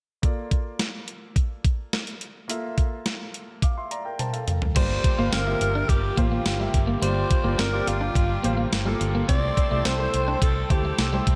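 A big arena sound wrapped in a lush hall reverb frames this urgent, nostalgic slice of 1980s-style pop in a straight four. It opens with a warm grand piano touched by slapback echo over a clean, sampler-style 12-bit drum machine, its thumpy kick, medium-tuned snare, hi-hat, tambourine, toms and crash sitting up front, and a drum fill from 4.2 to 4.8 seconds leads into the fuller second half. At 4.8 seconds the band fills out: a round, punchy, foam-muted fingered bass anchors the low end, a twangy, picked clean electric guitar with lush chorus plays a riff in the background, and a crunchy overdriven guitar with analog chorus joins just before. A bold, brassy analog pad of detuned sawtooth tones holds soft-attack chords with a filter swell behind everything. Leading the way is a breathy, raspy alto saxophone solo with vibrato and slapback echo, gritty yet clear in a pop style, carried over moody minor-seventh harmony before a brighter sixth chord arrives near 9.3 seconds.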